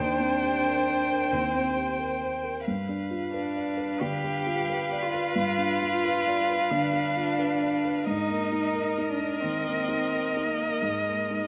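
Fragile and reflective, this rubato neoclassical piano-and-strings excerpt sets a dark, woody solo violin melody up front over a clear, intense cello second line, while a mellow, intimate felt-muted upright piano and an expressive viola with portamento accompany within a moderate scoring-stage reverb as the harmony moves from Cm7/Eb through G7 to Absus2.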